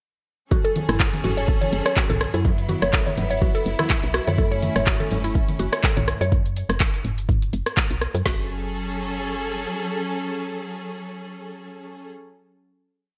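This afro house piece runs at 124 BPM in 4/4 with a light 16th-note swing, and its F# minor mood is warm and hypnotic, moving from F#madd9 to Esus2/F# before a break at 6.3 seconds and a return to F#madd9. A rich symphonic string section holds lush, bowed sustained chords with smooth vibrato from the start, pumping under sidechain compression. Over it a mallet-like FM synth pluck repeats a 12-step arpeggio loop that drifts against the bar, its round, mellow tone coloured by chorus, phaser and digital delay. Two electronic drum kits sit up front, one giving a deep four-on-the-floor kick, a woody snare and open hats, the other adding programmed closed and half-open hats, cabasa, low tom, rim click and handclaps through overdrive and gated reverb. Bright acoustic congas interlock softly in the background. A dark, woody FM bass enters at 0.9 seconds with a syncopated riff warmed by tube saturation. 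After the drums drop out, the bass carries on until 9.7 seconds while the strings sustain the final chord until 12.1 seconds, set in light digital ambience with a bright 1980s-style sheen.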